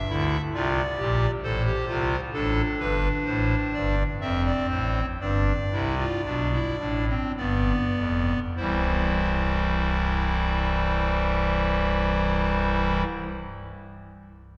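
This is a classical, baroque-style three-part fugue for solo pipe organ in 3/4, taken from a longer piece, with a stately yet lively mood. The organ speaks through a clarinet reed stop with a hollow, romantic voicing, sitting up front and spanning from deep pedal notes up into the upper middle register. From 1.0 seconds the pace gradually slows, easing the first section through a half-diminished opening, A minor and G harmonies, F and a suspended G toward a dominant seventh. At 8.6 seconds the music arrives on C major as a brief second section begins. A generous church reverb with a long decay surrounds the organ, and the production leans dark.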